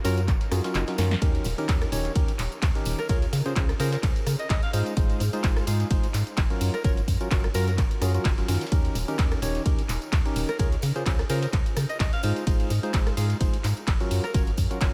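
A hollow, percussive organ stab riff with chorus and sidechain pumping opens this euphoric, uplifting piano house cut at 128 BPM with a light swing, over a dark, organ-like FM bass with tube saturation, while a bright alto saxophone with light vibrato and analog delay sings a melody in the background. A punchy analog drum machine of claps, hats, ride, rim and snare, a very quiet gritty sampler-style kit and a close, dry tambourine play from the start. An up-front, tape-warm electronic kick enters at 0.3 s and drops out briefly around a drum fill at 1.0 s, and a faint electronic swell rises in at 0.5 s. The chords cycle through Gbmaj7, Eb7, Dbmaj7 and Ab6 in a light reverb.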